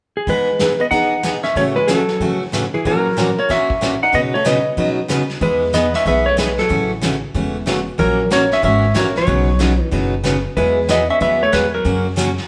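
Western swing country at 186 BPM in E major, cheerful and down-home, with a dark, clean lap steel played with slide and fingerpicks carrying the melody up front, a compressed hollow-body archtop tracing a second line, a bright, jumbo steel-string acoustic picking through the changes, a vintage brush kit with a punchy kick keeping the swing, and a woody, thumpy upright bass joining at 5.4 seconds, all in a live, reverberant large-room sound.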